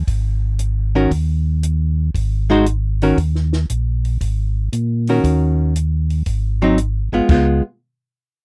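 A dry, close 1970s-style studio sound frames this bluesy, greasy soul jazz organ trio fragment, swung in four. A mellow, round tonewheel organ carries the bass line through chorus vibrato and a slow rotary speaker, beside a compact cocktail kit of china cymbal, hi-hat, high-tuned snare and punchy kick with dark cymbals. From 1.0 seconds a clean, picked hollow-body archtop guitar adds accompaniment over changes such as Ab7, Ebm7 and Db7.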